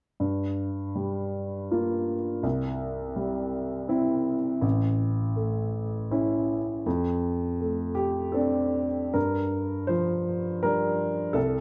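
A rubato pulse in 3/4 at about 81 BPM carries this reflective, intimate neoclassical minimalist piece in G dorian, cut from a longer work, where a solo upright piano with a woody, natural tone and long sustain sits up front from 0.2 s, moving through Gm7, C, A and F6 before returning to Gm7 as a new section opens at 9.2 s, the recording steeped in moderate studio reverb and the worn, warbling pitch drift of old cassette tape.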